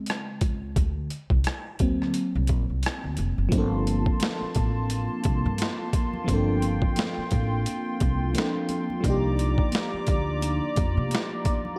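Smooth and late-night, this neo-soul R&B passage at 87 BPM with a swung 16th feel opens on a lush, dreamy FM electric piano with a soft pad layer, colored by chorus and tremolo, joined by gritty, overdriven boom bap sampler drums with a thumpy kick and high-tuned snare sitting up front, and a woody pizzicato upright bass, before moving into G minor at 3.5 seconds, where a hollow, flute-like pad adds mellow sustained chords and very quiet congas played with soft hands sit under light reverb.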